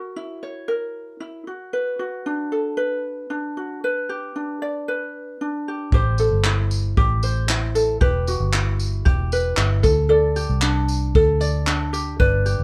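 A bright, thumb-plucked ukulele opens this carefree, heartfelt acoustic pop fragment alone, moving through F#7, Bm7 and G at a relaxed 115 BPM in straight 4/4. At 5.9 seconds the band joins: a dark, round, foam-muted electric bass sits up front, and a roomy brush drum kit with a tight kick, tambourine and handclaps adds a warm, rolled-off layer of color. The harmony shifts there to Am7, Emadd9 and Dsus4. The players sound as though they share one room, with little reverb. The passage is cut from a longer piece and breaks off at 12.6 seconds.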